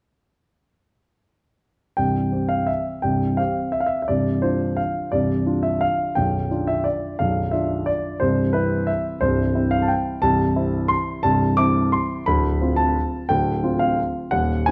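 A classical piano waltz in C major, graceful and elegant, moving at 174 BPM in 3/4 with a rubato feel that lets the pulse breathe. A solo grand piano carries the whole piece from 2.0 to 14.7 seconds, ranging from a deep B0 up to D6, its tone warm, present and polished with a short sustain. The harmony moves from C through Dm7/C and G7/B before settling back on C at 8.2 seconds, then turns to Dm7 at 12.3 seconds. The piano sits up front in a wet recital hall whose reverb lingers for about 1.5 seconds, lending the dark, warm production a sense of space. Tuned slightly low at A4 = 439 Hz, this passage is cut from a longer piece.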